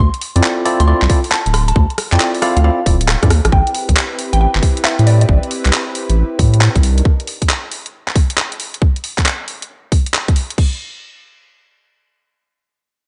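A dreamy, reverb-soaked mix with a dulled, rounded top end frames this moody, skippy slice of two-step UK garage, cut from a longer piece and moving at 136 BPM in A minor with a 65% swing on the 16th notes. A thick, saturated sine sub bass sits up front from the start alongside a woody, FM mallet-like pluck carrying the melody through chorus, phaser and tape echo, while clean tine electric piano stabs ring out through tape echo over a Dm9 chord. The garage kit brings bright hats, handclaps, rim clicks and a crash cymbal, joined at 1.1 seconds by a tight, layered electronic kick, both placed in a small room. A drum fill leads into the move to Am9 at 3.5 seconds, where a smooth, detuned sawtooth pad enters with chorus, tremolo and sidechain pumping, later shifting to Cm9. Once the bass and pad stop at 7.0 seconds, the kick and kit carry on alone until the harmony drops away entirely.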